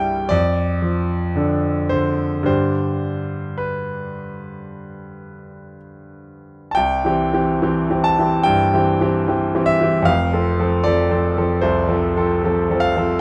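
A bright concert grand piano plays alone, up front with a brilliant, natural tone and deep bass reaching from F1 to A5, in this yearning, wistful romantic nocturne in C major, cut from a longer piece, that moves in a rubato 4/4 at 53-78 BPM through Dm/F, G, C and F, with a new section arriving at 6.8 seconds, all set in light reverb within a dark, warm production.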